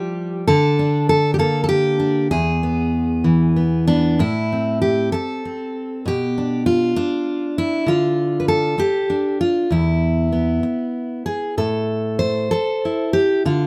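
Folk fingerstyle in an unhurried 6/8 with a rubato feel, intimate and reflective, as a full-bodied jumbo steel-string acoustic guitar, fingerpicked and up front in moderate studio reverb, moves from Bb/D and E into a passage at 4.2 seconds that passes through Am, Bdim, Dm and E5 before returning to Am at 11.6 seconds, in a clip cut from a longer piece.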